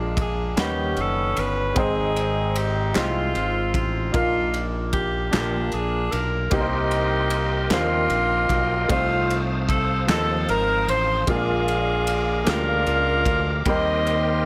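A slow, straight 6/8 gospel pulse at 50 BPM carries this soulful, uplifting excerpt, where a soft-attacked jazz-style saxophone section sings the melody up front over an intimate grand piano with audible action noise, a bright, direct fingered electric bass, a punchy studio drum kit with kick, snare and ride in a pumping room, distant crisp group handclaps, and, from 6.5 s, a reedy tonewheel organ with key click, chorus vibrato and fast rotary speaker holding sustained chords in the background, all under light reverb as the harmony moves from Bb7 through Cm7 and F7/C to rest on Eb6.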